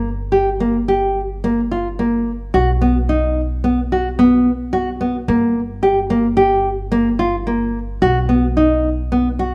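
A fingerpicked nylon-string guitar sits up front, its dark, deep classical tone carrying arpeggios over Gm and B chords, with audible finger squeak. Beneath it, a pizzicato upright bass on gut strings adds a woody, thumpy low end, set back in the blend. This hypnotic, pensive fragment of contemporary chamber music moves in 5/4 at 109 BPM with a straight feel, framed by a moderate recital-hall reverb.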